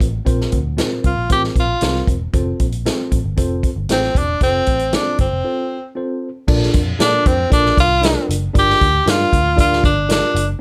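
Heard in a moderate club reverb, this cut from a longer uptempo 1960s-style soul tune has a joyful, danceable energy over a straight four-beat groove. An acoustic vintage drum kit sits up front with a natural studio-room sound, a punchy kick, a medium-tuned snare, hi-hat and crash cymbal. Beneath it, a dark, round, foam-muted picked electric bass plays low, while a worn, slightly out-of-tune tine electric piano adds mellow, clean chords. At 1.1 seconds a bright tenor saxophone takes the solo melody up front, jazz-style, with vibrato and scooped notes. A break runs from 5.4 to 6.5 seconds, and then the harmony moves from suspended and plain major chords to richer major-seventh and minor-seventh colours.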